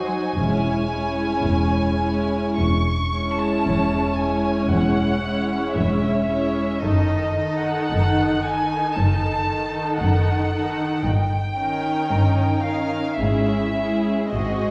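Rubato phrasing in 4/4 shapes this melancholic, solemn fragment of a slow romantic movement for string orchestra, where a muted chamber violin section carries the melody over a distant second violin line, veiled con sordino violas sit up front with the accompaniment, dark cellos in the background and double basses hold the bass, all bowed with vibrato and heard from further back in a wet scoring-stage reverb.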